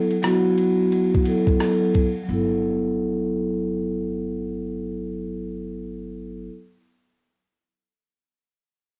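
A home cassette recording with moderate booth ambience carries this cool, relaxed jazz-hop excerpt in G major at 88 BPM with a swung feel, where an up-front, mellow vibraphone with soft mallets and plate reverb rings through a rootless Dadd9 and then a Gmaj13, a gritty, compressed boom bap sampler kit of thumpy kick, hi-hat, ride cymbal and rim click plays the opening break until 2.1 s, and a quiet, woody pizzicato upright bass enters on G1 at 2.3 s.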